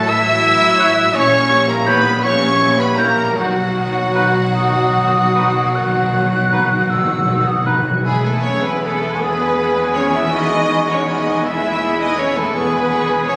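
A slow, romantic classical movement for symphony orchestra in a lilting 12/8 with flexible rubato, serene and warm in mood, cut from a longer piece. Two violin sections carry the music, one singing the melody high with a soft attack and lush vibrato, the other playing a second line an octave lower, while an intense, very quiet viola section supplies accompaniment and a rich cello section in the background and a distant double bass section anchor the bass. Mellow French horns sustain chords in the background throughout, joined until 7.7 s by very quiet trombones and by dark trumpet stabs that stand forward in the texture. At 0.8 s a pure, hollow flute, a mellow cor anglais and a faint clarinet enter with supporting lines, and close timpani enter at 3.4 s with a fill that runs to 8.0 s, playing on to 9.2 s. The harmony drifts through shadowed diminished colour before settling onto home ground as the phrase opens into its second part, heard through a reverberant hall sound captured on a phone in the room, with added club reverb and compression.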